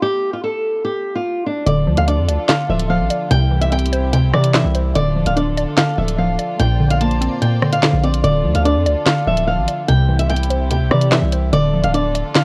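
Cold and ominous, this half-time drill piece at 146 BPM in D minor opens with a fingerpicked flamenco guitar alone, its fresh strings and finger squeak up front, until at 1.7 seconds a hollow, bouncy square-wave pluck with chorus, a dark bowed string section, a heavy, aggressive distorted 808-style bass and an electronic drill kit with a sharp snare, hi-hats, handclaps and rim clicks arrive over a Dm, C and Bbadd9 progression, the whole recording wrapped in small room ambience and worn, warbling cassette-tape pitch drift.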